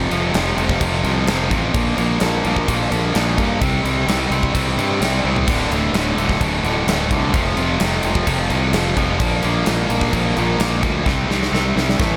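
Driving and menacing, this hard rock excerpt at 129 BPM in straight 4/4 pushes an up-front, double-tracked high-gain guitar riff over a growly, fuzz-laden fingered bass and a huge arena drum kit with a punchy kick, medium-tuned snare and bright cymbals, all in a small room ambience. The chords move from F to Bb5, C5 and D5, then through F5, Bb and C5 again, with drum fills at 5.2 seconds and from 11.1 seconds to the cut at 12.2 seconds.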